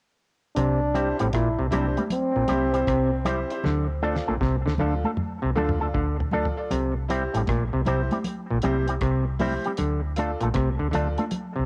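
At 0.6 seconds a dark trombone opens this sunny, uplifting roots reggae excerpt with a short second line of punchy, scooped notes and light vibrato, carried on a dub echo, and it drops out at 3.2 seconds. It arrives together with an overdriven, stringy clav riff and a round, foam-muted fingered electric bass, both up front, over a cloth-damped, thuddy drum kit with a fat snare and tight kick, plus close, high-tuned congas played with soft hands in the background. By 0.9 seconds an electric guitar through an envelope filter adds clean, compressed accompaniment with its own dub echo, while a brilliant grand piano supplies stabs with long sustain. The groove sits at 78 BPM in 4/4 with a swung sixteenth feel, moving between C and Dm in C mixolydian, and a drum fill runs from 3.6 to 6.7 seconds before the second section begins. The sound is that of a home cassette recording, with tape colour on most parts, light reverb and a studio ambience.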